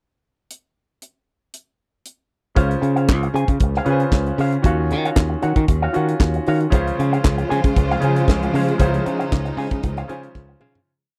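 A tight funk drum kit opens this driving, sultry disco piece at 116 BPM alone at 0.5 s, laying down a four-on-the-floor beat with sixteenth-note hats and a high-tuned snare layered with handclaps. At 2.6 s a growly fingered bass playing octave lines with slides, choppy sixteenth-note guitar through an envelope filter, and a polished grand piano pushing spread chords with grace notes join over Dbmaj7 and Ebm9, before a bowed string section adds a sustained pad rich in vibrato at 6.7 s. The dry, close 1970s-style sound keeps the drums and bass up front as the piece fades out into a closing drum fill.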